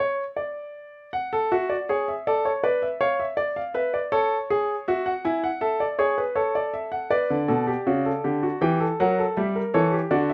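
A lone grand piano opens this short classical excerpt, a baroque-style fugue in three parts, heard from 0.0 s through to its cut at 10.3 s. The tone is polished and present, set up front with a gentle touch of reverb around it. At a straight 80 BPM in 4/4, the mood is lively yet stately, with the voices spread across the keyboard from B2 up to G#5. The harmony moves from A through B minor with an added eleventh, back to A, then on to D before settling on a diminished seventh over E. The whole passage comes across as a lively, dignified fragment lifted from a longer work.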